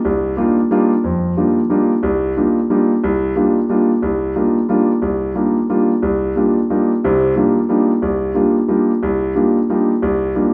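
Swinging in a brisk 3/4 at 180 BPM, this spiritual, open jazz excerpt features a solo grand piano, tuned to A4 = 441 Hz, playing throughout its 10.5 seconds from C2 to F4, with a new section arriving at 1.0 second. The piano sounds warm, smooth and vintage, sitting up front and opening on an F13sus4 chord. A large studio reverb with a 1.5-second tail gives it a spacious, wet ambience.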